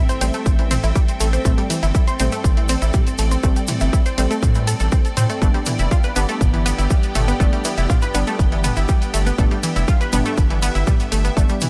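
A morphing, chorused wavetable pad, a lush detuned unison pluck arpeggiating through digital delay and mellow brassy synth stabs open this hypnotic, cinematic melodic techno excerpt together, each pumping with the sidechain over an Am7 to G change, before a tape-warm analog drum machine with hi-hat, ride cymbal and toms and a grainy tube shaker slip in at 0.1 s, a gritty, saturated synth bass growls up front at 0.2 s, and a punchy layered electronic kick lands at 0.5 s in a dry mix.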